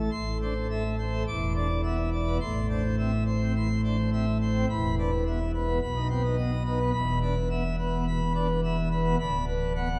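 A solo pipe organ on full plenum with mixtures carries this jubilant toccata in A minor at 106 BPM, its brilliant, romantic voicing set up front and spanning from D1 to D6, tuned to A4 = 436 Hz. The harmony moves from A minor through E5 and B before settling on Bm/D near 9.2 seconds, in this 10-second cut from a longer piece. A wet church reverb with a 3.0-second decay surrounds the organ within a dark overall production.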